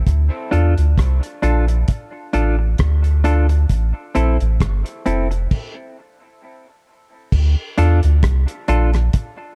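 A deep, round sub bass sits up front in this meditative, swung dub reggae excerpt, its soft tone sustained. A cloth-damped, thuddy acoustic kit plays dry and up front, with a tight kick, rim clicks, hi-hat and dark, rolled-off crash cymbal, while a clean, bright semi-hollow electric guitar adds picked accompaniment treated with dub echo. A stop from 5.5 to 7.3 seconds gives way to a new section, all within a dark, small-room ambience.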